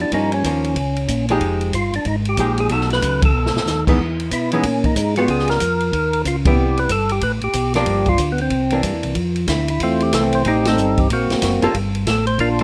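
Soul jazz organ trio with a greasy, swinging mood, cut from a longer piece: a fat, lightly overdriven tonewheel organ with third-harmonic percussion, vibrato and a slowly turning rotary speaker carries the melody up front, while a second, smooth organ voice with key click and slow rotary supplies the bass line. A dark, compressed hollow-body archtop guitar comps cleanly beneath, and an acoustic drum kit with dark cymbals and a boomy kick enters at 0.1 s, with band accents at 3.2 and 6.4 s and a short drum fill just after the first. The harmony wanders through restless chromatic changes before settling into F major for a second section at 9.2 s, all captured with close, detailed microphones and light reverb.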